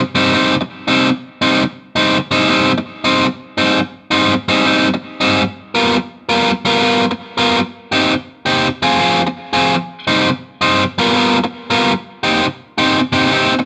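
An overdriven electric guitar opens at 0.1 seconds, biting and up front, playing a smoky, mournful blues in C minor. The picked tone has a warm, gritty edge, and the part ranges from Ab2 up to A#4. The tempo sits at 111 BPM in 4/4 with a swung eighth-note feel, while the harmony moves from C minor through Abmaj7 and a tense G7#9 before settling back on C minor. Light reverb gives the sound the air of a band playing live together in one room. The guitar stops at 13.6 seconds, and this brief passage is cut from a longer piece.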